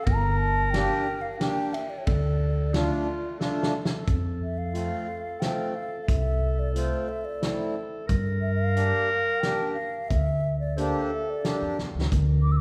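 Klezmer in 3/4 at 90 BPM, this short excerpt is bittersweet and soulful, moving from D minor into F major at 4.1 seconds. A pure, hollow concert flute carries the melody with vibrato and a soft attack, while a clear, present clarinet in a classical style plays a second line beneath it. A woody, pizzicato upright bass sits up front on steel strings, and a reedy, airy accordion with slow beating fills in the accompaniment from 0.7 seconds. The loose acoustic drum kit is gritty and saturated, with a fat snare, punchy kick and dark cymbals on a rolled-off top, adding fills before the change to F major and again near the end. The whole ensemble is heard from further back in a recital hall, where a wet reverb lends the band a distant, resonant glow.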